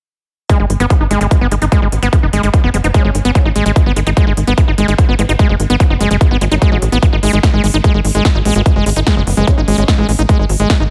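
The mix is dry and close, with the kick, sequencer bass and acid bass sitting up front in a short psychedelic trance excerpt that feels alien and intense over a straight pulse. A punchy electronic kick drives it from 0.5 s, layered and tape-warm, and shares a large-room character with the dance kit's snare and crisp hi-hats. Underneath, a tight sequencer bass built from sawtooth and square waves with ring modulation plucks through a filter with a fast, decaying attack. On top, an overdriven acid bass plays a squelchy, gritty, resonant riff, saturated and sidechain-pumping with a trail of delay. From 1.9 s to 10.0 s, a very quiet formant-sweep wobble bass adds a detuned, chorused second line that wobbles behind the mix.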